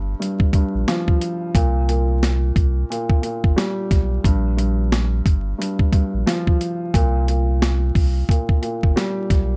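Swung sixteenths at 89 BPM in 4/4 drive this confident, nostalgic boom-bap hip-hop excerpt, where a gritty, pitched-down sampler-style drum kit with a thumpy kick, high-tuned snare and hi-hat sits up front from 0.2 seconds beside a round, deep sine sub bass, while a dark, woody upright piano with short sustain and cassette-tape filtering moves through C5, Bb5 and back to C5 over dry, vinyl-crackled production tuned to A4 = 436 Hz.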